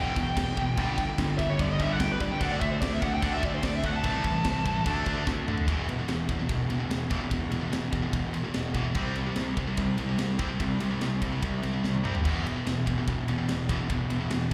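A dark, bluesy lead guitar solo opens this epic, brooding heavy metal excerpt at 146 BPM in E minor, its distortion trailed by slapback echo and digital delay. Beneath it, a veiled, muted chamber string section holds very quiet sustained chords until 5.7 seconds. Three picked guitars (one scooped and high-gain, one tight, and one double-tracked with overdrive and slapback echo) churn out the riff in the background, joined by a growly fuzz bass and an up-front drum kit with a high-tuned snare and bright cymbals, all heard as a live club gig through the venue's PA with small-room reverb.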